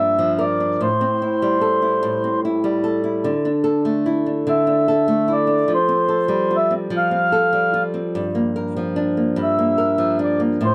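In a slow 6/8 with a straight feel, this aching, melancholic pop fragment is cut from a longer piece and pairs a reedy, boxy accordion melody with a fingerpicked flamenco guitar accompaniment. Both parts sit up front in a dry, close 1970s-style studio sound with light reverb, and finger squeaks can be heard on the guitar strings. Around 3.2 seconds the harmony moves from minor seventh chords to open suspended and added-ninth colours, while the accordion's full tone-chamber voice holds a narrow, mellow line.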